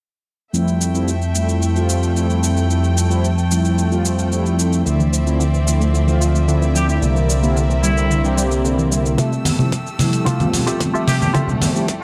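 Light reverb spreads across this feel-good, groovy nu-disco excerpt, where mellow synth brass with chorus, tape echo and sidechain pumping plays over sustained chords from a rich, smooth studio violin section, a fat, detuned analog bass, and an overdriven, dusty soul sampler-style kit of cabasa, hi-hat and toms. A round analog pluck adds background arpeggios from 4.9 seconds, and a nasal, muted trumpet section carries a distant melody through a low-pass filter and analog delay from 6.8 seconds. At 9.2 seconds the bass stops and the music builds with a drum fill, a very quiet, thumpy electronic kick, and a bright, twangy clean electric guitar riff whose filter sweeps beneath analog chorus, 12-bit sampler grit and tape echo, while ringing congas in a large room join at 9.4 seconds.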